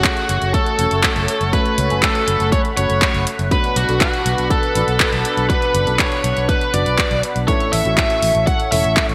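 A biting, overdriven lead guitar sits up front and carries the melody, its bright picked tone trailed by digital delay. This is romantic, danceable italo disco in a straight four, cut from a longer piece and moving from F#m to Bm and then A. Underneath, a smooth sawtooth pad with a soft attack and long release holds sustained chords, its detuned voices shimmering with chorus and a moving notch. A dark, boxy grand piano adds mellow stabs in the background, while a round, punchy fingered electric bass enters at 0.3 seconds. A punchy, layered electronic kick drives the groove, joined by a house kit whose handclaps and hi-hat sit up front, treated with gated reverb, all within a lush hall and a bright 1980s-style digital production.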